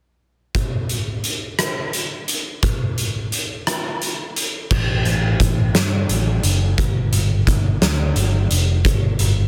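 Quiet-loud alternative rock, angsty and brooding, moves in a slow 6/8 at 58 BPM in this short cut from a longer piece. An oversized, low-tuned acoustic drum kit plays alone from 0.5 seconds, up front and gritty with a boomy kick, fat snare, dark cymbals and a pumping big-room sound, working through crash, hi-hat, rim click, kick and snare. At 4.7 seconds a picked electric bass joins, round, punchy and amped in a low register, over a dense, heavily limited modern master with little reverb.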